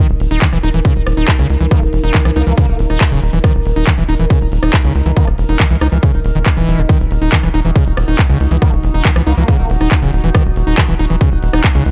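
A screaming, distorted acid line runs through this driving, hypnotic psychedelic trance passage, its squelchy, resonant sawtooth riff sweeping through a filter, thickened by chorus and tape echo and pumping against the kick. Beneath it, a tight sequencer bass in Eb phrygian plays short, punchy plucks at 139 BPM in a straight 4/4. A layered electronic kick sits up front, and a big-room dance kit adds handclaps, rim clicks and crisp hats. An overtone-sweeping drone holds slow-attack chords in the background, bathed in reverb and chorus. A nasal, formant-filtered wobble bass surfaces faintly between 1.7 and 5.3 seconds and returns briefly at 8.6 seconds. The production is dark and warm with a digital ambience, and the clip is cut from a longer piece.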